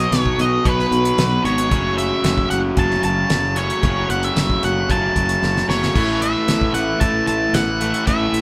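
A straight, driving 4/4 at 113 BPM propels this sunny classic-rock excerpt, where an up-front, dark octave-fuzz lead guitar sings its melody over two overdriven riff guitars, one crunchy and in the background, the other bright and compressed, plus a very quiet, boxy acoustic archtop, a growly fretless bass and a dry 70s kit with a fat snare and tight kick that enters at 0.1 s and plays a fill at 5.4 s, all moving through B, F#m and A in a live room with wet studio reverb.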